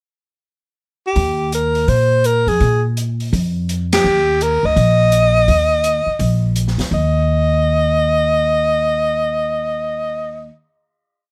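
A clear, close-miked alto saxophone opens this short, complete small-group swing and bop piece with a pickup phrase at 1.1 seconds, its jazz-style vibrato placed up front. Upright bass and an open acoustic drum kit join at 1.2 seconds, the bass played pizzicato in a two-feel with a woody, steel-string tone sitting forward in the mix. The drums sound airy and polished in a small room, with sticks keeping time on the hi-hat over dark cymbals, a high-tuned snare and a boomy kick. The sophisticated, playful mood comes through the saxophone's motif-based song phrases and a shared band accent, before the drums stop at 6.9 seconds and the saxophone and bass sustain a final note. Light reverb adds a touch of space around the group.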